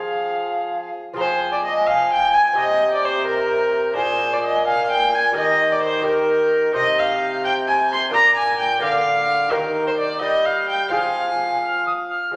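A close, reedy viola with a gut-string tone and light vibrato carries the second line up front, while a distant, airy alto recorder with a soft chiff sings the melody above it in this rustic, solemn renaissance-style consort dance in F dorian. The dance moves in a straight 6/8 at 86 dotted-quarter beats per minute, with a delicate fingerpicked lute on double gut strings and a clear bassoon bass beneath. The progression moves from Fm through Eb and Cm back to Fm, and the excerpt, cut from a longer piece, sits in a recital hall reverb, with the viola dropping out at 12.1 s.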